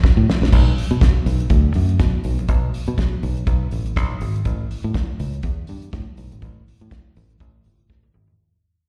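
Driving and danceable, this disco fragment cut from a longer piece rides a swung sixteenth-note feel, as a soul drum kit with a fat snare, tight kick and dark, rolled-off cymbals opens with a fill before settling into the groove. A bright, punchy fingered electric bass with a foam-muted tone enters at 0.2 seconds and sits up front beside the drums, and the music fades out from 0.5 seconds onward until a closing drum fill at 7.9 seconds. It sounds like a live gig heard through the venue's PA, carrying the reverb of a recital hall.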